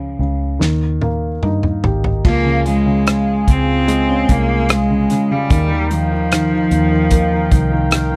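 Tender and emotional, this short excerpt from a longer pop ballad moves at a slow 74 BPM in a straight 4/4. A concert grand piano with audible action noise and deep bass plays accompaniment from the start, alongside a round, punchy, foam-muted fingered electric bass with a dark, amped tone. At 0.6 s a loose indie drum kit enters with a fill that runs to 2.2 s, its fat snare, tight kick and rolled-off top sitting up front alongside hi-hat, rim click, toms and crash cymbal. From 2.2 s the harmony moves from Eb to Db and later to Ebadd9, as an analog pad adds smooth, detuned, warbling sustained chords with a soft attack and chorus. A bowed cello carries the melody, with focused vibrato that sounds both up front and distant, trailed by tape echo. The recording is dry and close, in a 1970s studio style with little reverb.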